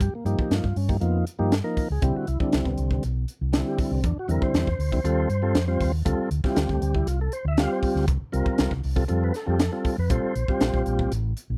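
Slick and funky, this short cut from a longer electric jazz fusion piece moves at 119 BPM in a straight 4/4 feel. A crisp fusion drum kit sits up front with hi-hat, a tight kick and a high-tuned snare, its sound saturated and gritty in a small, pumping room. A fingered electric bass, dark, round and amped, holds the low end between A1 and G2 throughout. A tonewheel organ supplies smooth, clean accompaniment from D3 to F5, its key click audible and its tone colored by a slow rotary speaker. The harmony shifts through rich extended chords, opening on Gm7b13 and passing through Cmaj9, D9sus4 and Dm7 before settling on Bbsus2, all in a dry, close sound with little reverb.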